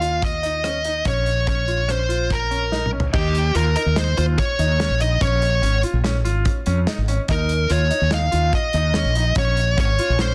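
Bright and driving, this progressive instrumental excerpt from a longer piece moves at 144 BPM in a straight 5/4, circling Eb5, Bbm and Bbm7 chords. A dark, fuzzy distorted lead guitar carries the melody up front, while a brilliant concert grand piano plays delayed arpeggios with long sustain, and a round, mellow fretless bass with analog chorus anchors the low end. A loose acoustic drum kit with a punchy kick, medium-tuned snare and dusky cymbals plays a fill from 2.7 to 3.1 seconds leading into the next section, all in a small room under a dense, heavily limited modern master.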